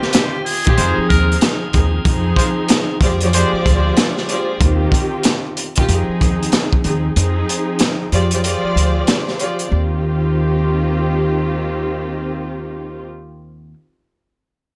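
A swung 94 BPM boom-bap groove from a crunchy, saturated breakbeat kit drives this nostalgic, soulful Eb major excerpt until 9.7 s, its kick muted from 7.2 s, while a buzzy muted trumpet offers a brief, breathy melody, up-front sul tasto strings with soft attack and vibrato carry the accompaniment, a piping tonewheel organ with key click sustains chords in the background, smooth-topped trumpet-section stabs sit behind, and a woody pizzicato upright bass enters at 0.7 s.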